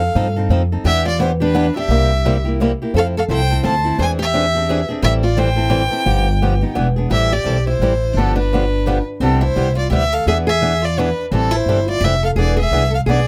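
A bowed violin with vibrato, portamento and a soft attack sings the melody from the first moment, joined by a warm picked concert guitar on a second line and a woody, thumpy pizzicato upright bass up front, with a bright parlour guitar with fresh strings entering at 0.2 s to play the accompaniment. This bittersweet, swinging gypsy-jazz excerpt moves briskly at 172 BPM in 3/4, winding through seventh and altered chords before settling into A minor at 7.1 s. The close, detailed recording is dry and intimate, and the excerpt runs to 13.3 s.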